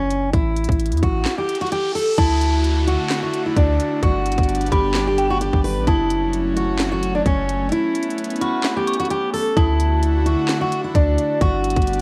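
A half-time trap groove of hard-clipped kick, sharp snare, handclaps and crisp hi-hats drives this menacing, melancholic hip hop fragment, where an up-front fingerpicked steel-string acoustic guitar carries the full-bodied melody over a deep, mellow 808-style bass, a riser and downlifter sweep in early, and from 2.2 seconds an eerie, inharmonic detuned synth bell with phaser and analog delay floats above an airy, breathy chorused pad, with cassette-tape grain on the guitar, drums, bell and pad in a lightly reverberant home recording.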